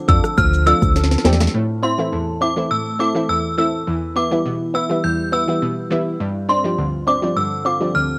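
Recorded at home on cassette in a booth with moderate, short ambience, this hypnotic, sultry dancehall excerpt in A minor at 103 BPM opens with an up-front electronic afro-pop kit (deep kick, sharp snare, metallic hats, rim click and shaker), a hollow, dark, organ-like FM bass, and egg shaker and timbales played with hard hands in the background. After a drum fill from 1.0 to 1.5 s, the bass and percussion stop at 1.5 s and the kit follows at 1.6 s. Over chords moving from Dm7 through Am and Em to G7sus4, a chiming, inharmonic FM synth chime rings out a high melody through ensemble chorus, phaser, tremolo, analog delay and plate reverb. Beside it sits a round, detuned sawtooth-and-square analog pluck with a noise layer, filter sweep and sidechain pumping, while a small, fingerpicked nylon-string guitar plays arpeggios lower in the mix through cassette tape and analog delay.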